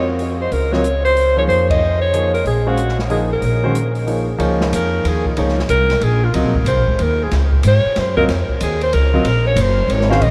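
Searching and intense, this fragment of a longer modal jazz piece swings in a lilting three-beat metre. The alto saxophone carries the melody with a vibrato-laden, roomy jazz tone, sitting up front, while the grand piano supplies smooth, vintage-tinged accompaniment underneath. The upright bass is plucked, woody and growly, with the steel-string grit of a player close to the microphone. The drum kit joins at 0.2 seconds, its hi-hat, ride, snare and boomy kick given dark cymbals and a rolled-off top. The band hits a shared accent at 1.6 seconds, and from 4.4 seconds the saxophone takes a solo. A huge, wet ambient reverb bathes the whole ensemble in a vast, echoing space.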